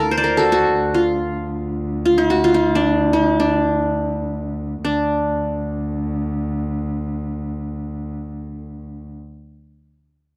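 Passionate and festive, this short fragment of a longer Arabic maqam ensemble piece unfolds in free time in maqam saba on D, tuned slightly high with A4 at 441 Hz. A bright, plectrum-plucked qanun carries the melody between D4 and D5, its triple strings giving the sound a glinting, bright-edged sparkle as it sits up front. Beneath it, a single muted cello holds a drone on a low D2, bowed con sordino with a veiled, dark tone, a smooth top and vibrato, placed close but well below the qanun in level. Both instruments play throughout, and the music moves from an opening passage into a contrasting second passage at 4.8 seconds. The dry, close sound of a 1970s-style studio comes with a modest booth ambience that keeps the plucked detail intimate and immediate.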